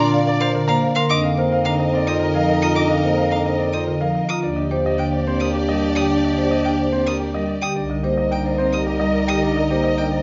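Moving in a straight 3/4 at 108 BPM, this propulsive, hypnotic stretch of minimalist classical pattern music, cut from a longer piece, sets a warm grand piano melody over a distant, soft-attacked French horn second line, round, woody rosewood marimba accompaniment, arpeggios from a ringing, metallic vibraphone with fast motor vibrato and a smooth, evenly bowed solo violin, lush, close symphonic string chords, and a mellow bass clarinet line, all moving through Bb, F7sus4, Ebmaj7 and Cm7 in a wet recital hall with highs rolled off above 7.5 kHz.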